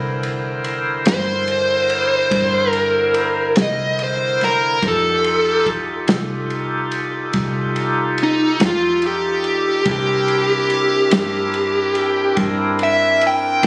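Slow blues in 12/8 at 48 BPM in C mixolydian, gritty and laid-back, where a dark, overdriven, picked lead guitar solos up front from 1.1 seconds over reedy tonewheel organ chords with key click and a slow rotary speaker, a round, foam-muted fingered electric bass, and a small-room soul drum kit with a tight kick, medium-tuned snare and dark ride cymbal, moving from C9 to F9 and back in a dry, phone-recorded sound cut from a longer piece.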